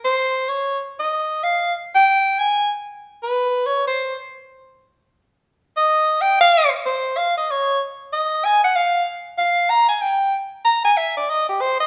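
Jazz with a playful, swinging mood, this short cut from a longer piece features a soprano saxophone solo carrying the whole passage. The horn plays solo from 0.0 to 11.9 seconds, moving between G4 and Bb5 with a clear, breathy tone, soft attacks and a touch of vibrato. Close-miked and placed up front, the saxophone sits in a stone room whose reverb adds a wet, lingering tail. The eighth notes swing in 4/4, giving the line a buoyant lilt. The playing falls into two statements of the same section, the second beginning at 8.7 seconds, with the live feel of a band captured in one room.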